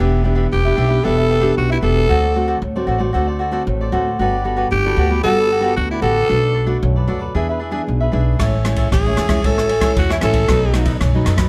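A growling alto saxophone carries the melody from 0.5 seconds, its raspy, close-miked jazz tone colored by subtone and light vibrato and set in a plate reverb. This short, playful, sunny cut of samba and choro moves at 114 BPM in a straight 4/4, in E minor, passing through chords such as Em7, Gmaj9 and B7. Beneath the solo, a crisp, picked cavaquinho and a fingerpicked nylon-string guitar with fresh strings fill out the accompaniment, while a pizzicato upright bass on gut strings sits up front with a woody, thumpy low end. An acoustic jazz drum kit joins at 8.4 seconds with a boomy kick, rim clicks and dark ride cymbal, heard in a small room. The recording is close and detailed with light reverb.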